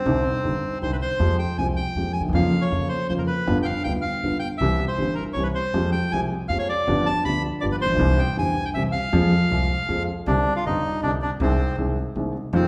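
Bathed in the lush reverb of a church or concert hall, this short tango cut from a longer piece moves with a tense, sultry rubato feel in three. A reedy, airy bandoneon carries the melody up front with a bright edge, while a dark grand piano, mellow, smooth and vintage-toned with short sustain, sits equally close in the accompaniment. Beneath them an acoustic upright bass plucks woody, thumpy gut-string notes through minor chords that lean on G7 before settling toward C.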